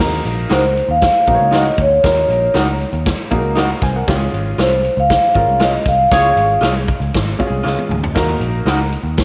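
Uptempo 1960s-style soul at 118 BPM in 4/4, this short, uplifting cut from a longer piece moves from Ebm to Db and back to Ebm. A mellow vibraphone played with soft mallets carries the melody from 0.5 to 6.6 seconds, its ringing, metallic tone set forward in the mix and touched with slapback echo. Beneath it, an intimate, woody upright piano with audible action noise provides accompaniment, while a dark, foam-muted electric bass holds down the low end with a round, amped sound. A swinging big-band drum kit with a punchy kick and medium-tuned snare sits up front, and an electric guitar through a small old amp adds slightly broken-up, lo-fi stabs with its own slapback echo. A clear horn section with light vibrato plays a brief, loose second line from 6.1 to 6.5 seconds as the band hits an accent, followed by a drum fill at 7.6 seconds. A moderate echo chamber reverb gives the whole recording a roomy, vintage glow.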